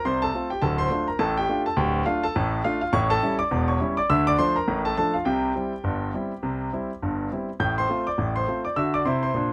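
Close, detailed microphones and a light reverb put a clear concert grand piano up front, close enough that its action noise comes through. This is a short cut from a longer solo ragtime piece in 2/4 at 103 BPM, with a lilting swing on the sixteenths that gives it a playful, cheerful bounce. The piano reaches from a deep bass at D1 up to G6, and its polished tone carries a long sustain that lets each chord ring. The harmony moves from F through D minor and A7, back to D minor, then on to C, F/A and a closing D7 at 8.8 seconds that leaves the phrase hanging. The whole passage lasts 9.5 seconds and feels intimate and present, as if the listener were seated beside the instrument.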